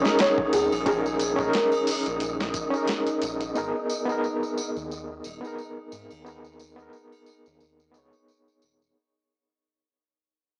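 A blown-out, overdriven recording with a small-speaker sound and light reverb frames this melancholic, hypnotic trip hop excerpt, cut from a longer piece and fading out across its nine seconds. It moves at 89 BPM in 4/4 with a 16th-note swing, in G# minor, as the harmony shifts from D#7sus4 to G#madd9 at 3.6 seconds. A felt-muted upright piano, soft and intimate with audible action noise, carries the melody through tape echo until 2.8 seconds. Beneath it, a reedy electric piano sits up front with tremolo, 12-bit sampler grit and tape echo, while a round analog bass holds the low end and a breathy, wind-like tuned noise texture hangs in its own reverb. A gritty boom bap sampler-style kit with a thumpy kick, medium-tuned snare and hi-hat plays from 0.1 to 3.5 seconds, and a tambourine and triangle add a light acoustic shimmer throughout.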